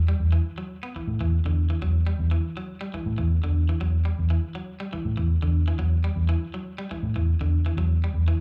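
Driving and funky, this short afrobeat passage, cut from a longer piece, moves in a straight 4/4 feel over a single Emadd9 chord. A vintage muted fingered electric bass carries the low end up front, its dark, round, foam-muted tone sitting in a low register and dominating the mix. Above it, an electric guitar at the edge of break-up plays arpeggios, bright and twangy with a picked attack and a slightly broken-up edge, colored by a slapback echo and placed well behind the bass. Both parts run nearly the full 8.4 seconds together. The sound has the feel of a live gig heard through a venue's PA, with a touch of club ambience but little reverb.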